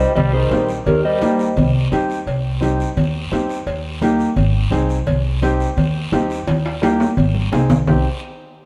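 A clean, fingered electric guitar with spring reverb and slapback echo carries the melody over a punchy trombone line until 1.7 s, while a dark upright piano with audible action noise and a thumpy, woody pizzicato upright bass drive this passionate cumbia fragment, joined at 0.2 s by bright congas, ringing vintage cowbell and timbales and a raspy guiro, with a drum fill from 6.5 s, the whole heard from further back in a room with moderate plate reverb.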